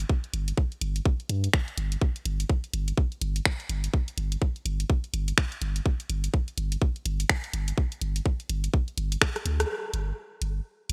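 Minimal techno with a cool, sparse mood and a swung 16th-note feel, cut from a longer piece, in which a deep, sine-toned sub bass with a pitch-drop attack, tube saturation and sidechain pumping sits up front beside a tape-warm garage kit of finger snaps, hi-hat and rim click, while a tight, layered electronic kick drives the drop until 9.3 seconds, just after a drum fill begins at 9.2 seconds and before a band accent at 9.6 seconds, in a lightly reverberant, bright 1980s-style digital production.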